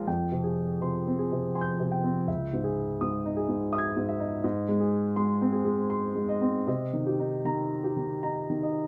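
A lone upright piano opens this short fragment cut from a longer neoclassical minimalist piece, its woody, natural tone sitting up front. The mood is wistful and melancholic, moving in a three-beat metre with uneven, rubato timing that lets each bar breathe. Across its 8.9 seconds the harmony drifts through four chords: two minor chords coloured with an added ninth, then a major chord, before it settles on a minor seventh. The playing spans a broad register, reaching from deep bass notes high into the treble. A moderate stone-room reverb gives the piano a sense of space, while the top end is gently rolled off, leaving the sound mellow and intimate.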